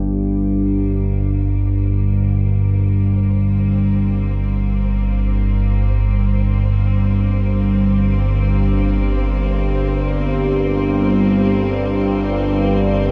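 A low, evolving analog drone of sawtooth and pulse waves with pulse-width modulation, chorus and phaser sits up front from the very start of this ominous, vast dark ambient fragment, cut from a longer piece, as a bright, earthy cello section fades in at 0.1 s with bowed, sustained chords touched by light vibrato and a flickering, grainy granular texture with its own reverb creeps in far in the background from 0.5 s, all suspended in the long, echoing wash of a cathedral-sized space.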